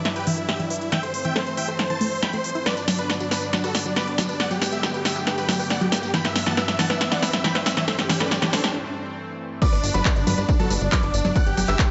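Uplifting and euphoric, this uplifting trance passage at 138 BPM in G major is cut from a longer piece and moves from a build-up into a drop. From the start, a huge, detuned supersaw lead carries the melody with delay and sidechain pumping, over a thick, warbling pad holding sustained chords through chorus, while a lush unison pluck runs arpeggios with a tape-worn character and a filter sweep across the build. A punchy techno drum kit with crash, handclaps, hi-hat, snare and tambourine plays a drum fill until 8.7 seconds, with a very quiet riser underneath, before a brief break. At 9.6 seconds the drop lands on Gmaj7 as a punchy, up-front electronic kick and a polished grand piano second line in the background enter, joined a moment later by a funky, plucky analog bass on G1. The harmony cycles through Em7/G, C6/G and Gmaj7 in a wet digital room with a short reverb tail.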